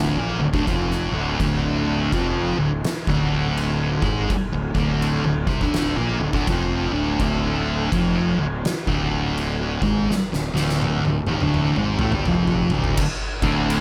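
Stoner and doom metal at 83 BPM in D minor, ominous and hypnotic with a swung 4/4 feel: this excerpt holds a single D minor chord as a thick, double-tracked fuzz guitar riff sits up front over a growly, punchy fingered bass with overdrive. An oversized low-tuned drum kit enters at 0.5 seconds, gritty and up front in a bright stone room, with a boomy kick, fat snare, dark cymbals and toms, and plays a fill from 10.1 seconds before the chord drops out. At 13.4 seconds a compressed, bright distorted electric guitar appears in the background, and the recording carries little reverb.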